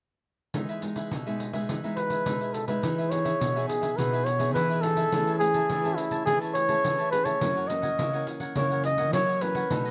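Samba and choro in a straight 4/4, lively and joyful, heard as an excerpt cut from a longer piece. From 0.5 seconds a bright, crisp picked cavaquinho and a fingerpicked classical nylon-string guitar with fresh strings share the accompaniment, both touched by slapback echo, while a jingly pandeiro played with hard hands keeps the percussion going. At 2.0 seconds a breathy flugelhorn takes the melody up front in a jazz-style solo, with light vibrato and scooped notes. A second fingerpicked nylon-string guitar joins on the bass line at 2.8 seconds as the music moves into a new section. The harmony moves from Emaj7 to Amaj7/E and then F#7, and the recording is dry and open-air, with little reverb.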